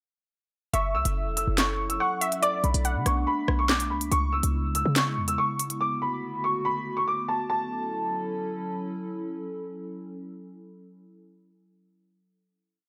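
Dark and cold, this half-time drill track loops a boxy, low-passed grand piano melody with tape echo over a warbling, detuned pluck counter-melody, a nostalgic lo-fi pad, punchy sliding 808 bass and a crisp drill kit with skipping hi-hat rolls and a clap-layered snare; by 5.8 seconds the bass and drums have stopped, and the pad holds the final chord until 11.4 seconds in a dry, gritty recording.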